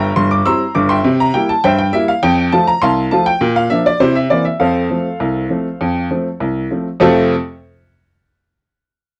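A straight 2/4 pulse at 101 BPM drives this short, playful ragtime piano fragment in F major, cut from a longer piece. A lone upright piano carries everything, sounding clear, woody and up front as it ranges from G1 up to E6. The harmony moves from C7 over G to F, then through Bb and C7 before settling back on F at 4.6 seconds. The piano plays until 7.3 seconds, just after a new section begins at 7.0 seconds. Light reverb and a worn, warbling cassette-tape quality with drifting pitch give the lively performance an aged character, and the instrument is tuned slightly sharp, to A4 = 441 Hz.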